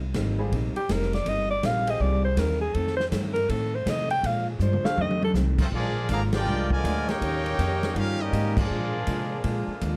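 Swinging at 161 BPM in 4/4, this joyful big band excerpt rides on a woody, thumpy pizzicato upright bass, a hollow-body electric guitar picking clean accompaniment, and an acoustic drum kit with dark cymbals and a punchy kick that drops a fill from 4.6 to 5.4 seconds, while a brilliant upright piano adds short background comping. A clear alto saxophone takes the opening solo with scooped notes from 0.8 seconds, over chords moving from Cm7 through F7 and Bb7. At 5.6 seconds a present, bright trumpet section seizes the melody with band accents, backed by a distant, roomy trombone line with light vibrato and a very quiet, mellow saxophone section holding sustained chords in a dark production with light reverb.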